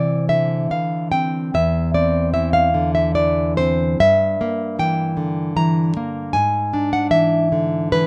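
Intimate and passionate, this brief excerpt of a romantic piece for solo classical guitar unfolds in a flowing triple metre with a freely breathing, rubato feel. A single nylon-string guitar carries everything, fingerpicked in a classical manner and sitting up front in the mix with a dark, acoustic tone. Its range stretches from a low E2 up to a high Bb5, giving the short passage both depth and lyrical reach. The harmony moves from C through C/E, then darkens with an Edim/G at 4.0 seconds before arriving on E7/G# at 6.4 seconds, leaving the phrase suspended as the fragment ends at 8.1 seconds. A light reverb lends the close, personal sound a gentle sense of space.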